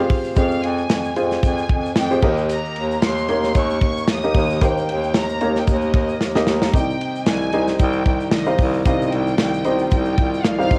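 Bittersweet and driving, this piano-driven pop excerpt moves at 113 BPM in 4/4 with a light sixteenth-note swing, its baby grand piano laying down the accompaniment beneath a clear, focused violin section carrying the bowed, vibrato-rich melody, both colored by cassette tape. A vintage, up-front bass clarinet anchors the low end while a polished, airy drum kit with a tight kick drives the groove, a grainy, distant tube shaker sits in the background, and after a drum fill at 6.2 seconds a very quiet, floating string section enters at 6.7 seconds with soft-attack sul tasto chords as the harmony moves from Fmadd9 through Eb to Cm. The dry, homespun recording carries vinyl crackle.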